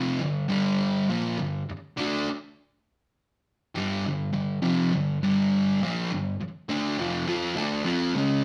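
A double-tracked fuzz guitar takes the solo from 0.0 to 8.4 seconds, its compressed, distorted, picked tone sitting up front with a slapback echo as it ranges from F2 to F4 over a G5 chord. This rowdy, swaggering rock excerpt moves at a straight 102 BPM in 4/4, tuned slightly flat to A4 = 439 Hz. Light reverb gives it the feel of a band playing live in one room.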